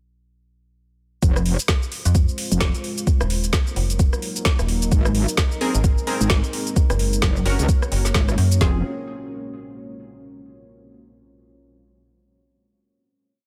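At 1.2 s a gritty, swaggering 130 BPM bass house drop in F phrygian kicks in with an overdriven garage kit, whose knocking four-on-the-floor kick and woody snare sit up front over a quieter layer of metallic hats, rim, shaker and snare swung at 59% on the 16ths, beside an aggressive, saturated metallic wobble bass whose modulated phrases change wobble speed; at 2.1 s a dark, chopped digital FM bass and a deep, moody sawtooth pad with a sub octave and chorus join, both pumping with the sidechain, through an Fm, Ebm, Abadd9, Gb progression; from 5.6 s sparse, bright orchestra-hit-like stabs in rootless voicings add tape echo before everything settles on a final Fm chord, all over a faint mains hum.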